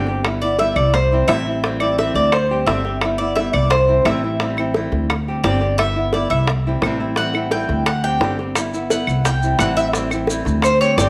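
Cuban son in a guajira vein, this relaxed, warm excerpt moves at a brisk 173 BPM in straight 4/4, in G major, cycling through G6, C, Am7 and D7sus4. The Cuban tres takes the lead from 0.4 seconds, playing up front with bright, metallic, picked arpeggios on double strings, some doubled at the octave. A small, fingerpicked nylon-string guitar supplies accompaniment beneath it, while a growly, thumpy pizzicato upright bass on steel strings sits up front with a woody tone. Tight, high-tuned bongos struck with hard hands and close, dry claves in the background carry the percussion, and grainy, compressed maracas join late at 8.6 seconds. The whole ensemble sits in a wet echo chamber reverb that gives the fragment a lingering room sound.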